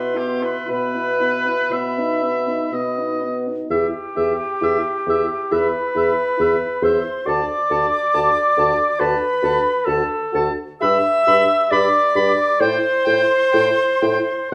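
Elegiac and melancholic, this slow romantic classical movement for wind quintet unfolds with a rubato feel, as a pure concert flute sings the melody with vibrato and a soft attack above a clear, distant oboe second line, a mellow clarinet sitting up front, a background French horn with light vibrato and a dark, punchy bassoon bass, all set in a large studio reverb over small room ambience.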